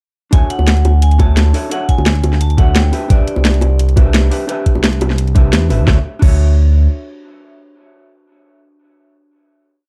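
A smooth, gliding synth bass sits up front in this short, dreamy liquid drum and bass piece, its sawtooth-and-triangle tone carrying vibrato and portamento through a dub-style line until 6.9 seconds. Alongside it, a gritty, thumpy electronic kick and a layered kit with a cracking snare, bright hats and crash drive a rolling two-step groove, the kit overdriven and both kick and kit set in a small room reverb. Round, low-tuned bongos sit softly in the background, while a clean hollow-body jazz guitar holds rootless chords with syncopated pushes through tape echo. A metallic, ringing vibraphone played with hard mallets offers brief call phrases through tape echo in the opening seconds, before the drop gives way to a final chord at 5.9 seconds that the guitar sustains until 9.9 seconds. The lush mix is wrapped in a dark digital ambience.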